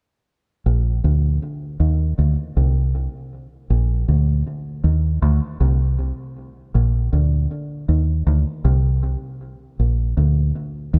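Sunny and uplifting, this short reggae passage, cut from a longer piece, moves at an easy 79 BPM in 4/4 with a straight feel in Bb major. A deep dub electric bass, played with the fingers, carries the whole thing as a solo part from 0.7 s to the close at 11.0 s. Its tone is dark, round and punchy, with a foam-muted quality, and it sits up front in an amped, direct sound touched by tape echo. The line stays low, moving between Bb1 and Eb2. The room is nearly dry, and the sound has the rough feel of a home demo mix.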